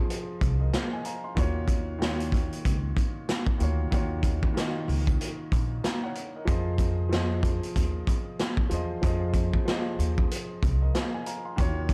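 Crunchy, gritty breakbeat drums sit up front in this tough, reflective boom-bap hip-hop excerpt at 94 BPM in 4/4 with a 60% swing on the sixteenths, the tight kick, medium-tuned snare and hi-hat saturated and rolled off at the top from 0.1 seconds. A pizzicato upright bass with a woody, growly steel-string tone anchors the low end while an intimate upright piano, its action noise audible and its notes ringing with long sustain through a cassette-tape colour, comps over Fm7 and Ebm7 changes. The small room and dark production keep the whole excerpt close and warm.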